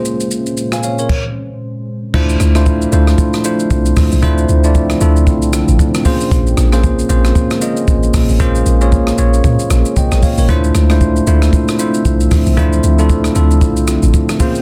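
A deep, round log drum bass with a fast attack, a decaying tail and a noisy FM edge arrives at 2.1 s, when the music drops after a brief stop from 1.1 s, and anchors this hypnotic, late-night amapiano cut at 115 BPM in D minor, swung on the 16ths. Up front, a bell-like, bright tine electric piano plays clean Bbm9 and Dm9 chords, while an open acoustic jazz kit with dark cymbals, a boomy kick, hi-hat, rim click, shaker, crash and a softly clipped snare drives the groove. Beneath them, a very quiet, moody sawtooth pad with detuned unison, chorus and a sub octave sustains slow-attack chords, all set in light reverb within a dense, heavily limited modern master.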